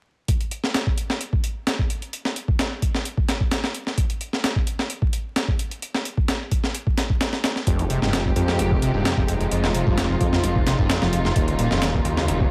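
A straight 4/4 breakbeat groove at 130 BPM comes in at 0.3 seconds, with a gritty, compressed sampler-style kit carrying a thumpy kick, high-tuned snare and hi-hat up front in a small room, all over a bed of vinyl crackle in F minor. At 7.7 seconds the funky, raw track fills out on an Fm9 chord: a thick, menacing detuned saw bass with tube saturation, a squelchy, screaming acid riff with distortion, resonant filter sweeps and subtle chorus, and warm bowed studio strings holding sustained chords, roughened by vintage 12-bit sampler grit and sidechain pumping. The harmony moves to Ebm9 at 11.4 seconds in this dry, aggressive excerpt cut from a longer piece.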